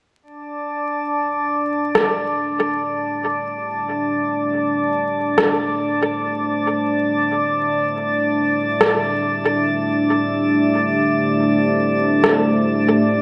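Spacious and meditative, this ambient dub excerpt floats in free time, cut from a longer piece. A drifting glass-harmonics texture opens at 0.3 seconds, its glassy, sine-toned overtones calm and sustained with slow attacks, long releases, chorus and built-in reverb. At 1.6 seconds a deep, dark ambient pad fades in with sustained chords, its detuned sawtooth unison and sub octave carrying a moody weight, shaped by a moving notch, chorus and reverb of its own. An electronic rim click sits up front with a tape-warm, produced character, re-recorded in a large room and trailed by dub echo. The echo-heavy mix sits in a moderate plate reverb, with vinyl crackle adding a dusty surface.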